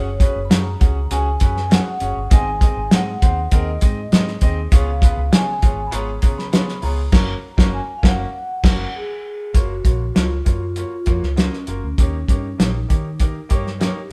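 Uplifting uptempo 1960s-style soul at 100 BPM in F# major, with a mellow, ringing vibraphone played with soft mallets and a slow motor vibrato carrying the melody over a clear concert grand piano, a round, foam-muted vintage electric bass and an up-front, cloth-damped thuddy drum kit with a fat snare and dark cymbals, all caught live in one room with light reverb, the band hitting an accent from 7.1 to 9.5 seconds before moving through F#maj7 and D#7 to close this cut from a longer piece.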